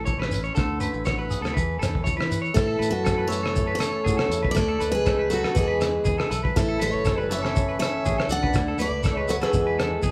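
Recorded live by a band in one large studio with a moderate reverb, this highlife passage, cut from a longer piece, has a carefree feel in a straight 4/4. From the start, a round, punchy fingered electric bass sits under a cloth-damped drum kit whose muffled, gritty thud carries a tight kick, hi-hat and rim click, while a grainy shekere sounds close and dry. Two electric guitars play throughout: one at the edge of break-up picks twangy arpeggios, and a bright, clean one with phaser plays accompaniment in the background. At 2.5 seconds a full-bodied, up-front steel-string acoustic guitar takes the picked melody, and at 2.6 seconds a breathy trombone joins it with a soft, whispered second line touched with vibrato. The harmony moves through A, Dadd9 and E, later Eadd9, in an easy repeating cycle.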